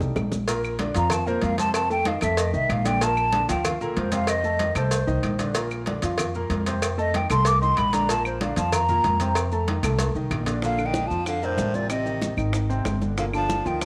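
Sunny and danceable, this Afro-Cuban jazz excerpt puts an airy, hollow concert flute with tape echo in the lead over a grand piano with deep bass, a thumpy, woody upright bass up front, and a percussion bed of round, low-tuned bongos and cowbell, thick-skinned congas, grainy maracas and dry claves, with a clear baritone saxophone entering as a second line at 10.6 s, all set in a moderate echo-chamber reverb.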